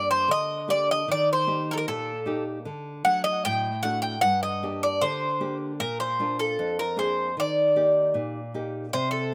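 Moody and cool, this short excerpt of Greek folk from a bouzouki band moves at an unhurried 76 BPM in a straight 2/4, cycling through G minor, E-flat, D and B-flat 7 chords. The bouzouki carries the melody up front, its picked, metallic double strings, some doubled at the octave, touched by a slapback echo. Underneath, a bright, fingerpicked classical nylon-string guitar plays accompaniment at a lower level, all heard outdoors with little reverb.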